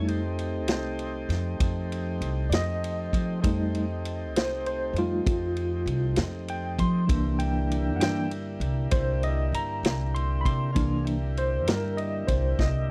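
Gritty and soulful, this short slow blues in a straight 12/8 sits on an F9 chord before moving to C9 at 7.1 seconds. A barky tine electric piano takes the solo across the whole clip, its bright, lightly overdriven tone shimmering with fast tremolo through a combo amp. Beneath it, a tonewheel organ holds smooth, clean sustained chords with a touch of key click, turning slowly through a rotary speaker. A pizzicato upright bass gives a woody, thumpy foundation up front, while a vintage kit of kick, snare and ride supplies a punchy kick, a medium-tuned snare and dark cymbals with a rolled-off top, closing on a drum fill at 12.6 seconds. The sound is dry and close, in the manner of a 1970s studio, and the clip is cut from a longer piece.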